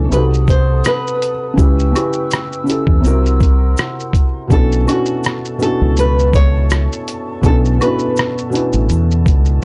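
Lo-fi hip hop at 82 BPM in B minor, nostalgic and reflective, with a swung sampler-style drum kit of thumpy kick, hi-hat, rim click and shaker sitting up front beside a round, punchy dub fingered electric bass with tube saturation, a soft felt-muted upright piano with audible action noise comping through Cdim7, C#m7b5, C7#11 and Bm11, a fingerpicked nylon-string guitar melody touched with tape echo, distant breathy flutes holding unsteady vibrato chords, and a background tube shaker and woodblock, all in a dry, gritty hardware sound that breaks off as an excerpt of a longer piece.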